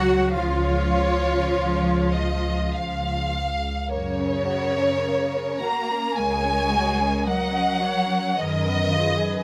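Closely miked with a touch of light reverb, this short excerpt from a slow, romantic string-orchestra movement in F# major unfolds at around 50-56 BPM in a rubato 4/4, tender and warm in mood. An expressive, lush violin section sings the melody up front over a smooth second violin line, while the distant violas fill in the accompaniment and the focused cellos and double basses, the latter also up front, anchor the bass, all bowed with vibrato. The harmony settles from C# onto F# at 3.9 seconds and colours the close with an Fdim over F# at 8.4 seconds.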